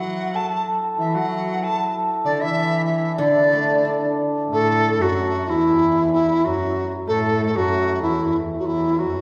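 Graceful and pastoral, this Chinese traditional chamber excerpt moves at a rubato 94 BPM in 2/4, with a mellow, pure large dizi with a buzzing membrane, tongued and colored with vibrato, singing the melody up front over a shimmering hammered dulcimer and a rich, bowed cello with expressive portamento, while a silvery fingerpicked guzheng rings at the opening and returns from 3.2 to 5.2 seconds inside a wet recital-hall reverb.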